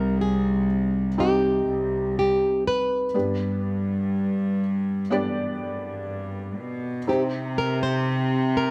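Tender and hopeful, this slow pop excerpt at 61 BPM sets an up-front flamenco guitar, fingerpicked in the G4 to C5 range, over a soft, felt-muted upright piano with audible action noise and a reedy, gut-string chamber cello section carrying the bass, all played live in one room with light reverb as the chords move from Cm to G and back to Cm at 7.1 seconds.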